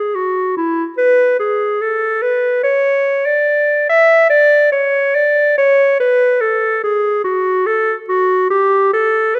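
A solo clarinet, warm and up front, carries this radiant, dance-like baroque-style classical fantasia in A major at 72 BPM in 4/4 with a rubato feel, moving between E4 and E5 across a 9.4-second passage cut from a longer piece and ringing in a moderate recital hall reverb.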